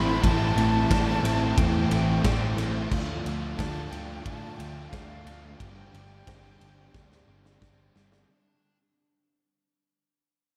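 Soaked in a lush hall reverb, this short, fading excerpt from a longer piece is a melancholic, brooding slice of shoegaze-leaning dream pop rock in a straight 4/4. An airy, reedy concert flute carries the melody through an analog delay, floating amid the very quiet sawtooth haze of a vintage string machine whose full ensemble chords hold alongside it with chorus and a sub octave. Three guitars stack their riffs: a double-tracked overdriven electric, a hollow-body semi-hollow set back in the mix with reverse reverb, and a dark, barely audible fuzz guitar. Alongside them, a clean, twangy, compressed twelve-string chimes softly in arpeggios. A round, foam-muted vintage bass anchors the low end, and a big, punchy acoustic drum kit sits up front from 0.2 seconds with snare, kick, ride and crash, closing with a fill from 6.9 seconds as the harmony moves from Am7 to Dm to Gsus4.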